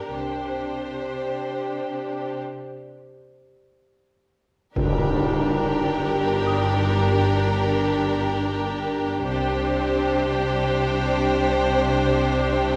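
Cinematic suspense film score in free time and G minor, tense and eerie, where a lush bowed string ensemble of violins carrying the melody and a second line, close violas, distant cellos and focused double basses hold Csus2 and Gm harmonies under a glassy, ethereal glass harmonica and a delicate, bell-like celesta in the background, as a break at 2.4 seconds gives way at 4.8 seconds to a band accent with a huge, bright impact and a dark tam-tam, all in the reverberant space of a scoring stage in this piece cut from a longer work.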